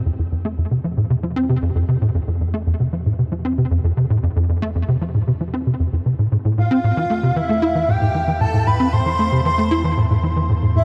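A round, deep sub bass fades in from the start of this mysterious, expansive ambient space-music passage, cut from a longer piece, as a punchy, dark sawtooth sequencer riff with a plucked filter drives forward at 115 BPM in a straight 4/4, colored by ensemble chorus, cassette-tape character and delay. At 6.6 seconds a breathy, flute-like synth lead with vibrato enters high above, its soft attack treated with chorus and delay, shortly after the harmony moves from Fmaj7/E to Am7/E at 6.3 seconds. A huge ambient reverb with an 8.7-second tail gives the whole space a vast, floating depth.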